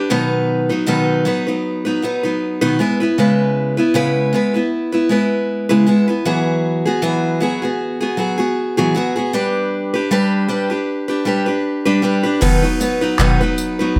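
At a relaxed 78 BPM in 4/4 with a light sixteenth-note swing, this heartfelt, carefree acoustic pop fragment opens on a bright, up-front picked steel-string acoustic guitar moving through B, C#m7, Eadd9 and G in a moderate studio reverb, until a booming analog drum machine with a deep kick, handclaps, tambourine and a crash cymbal joins at 12.4 seconds as the chords return to B.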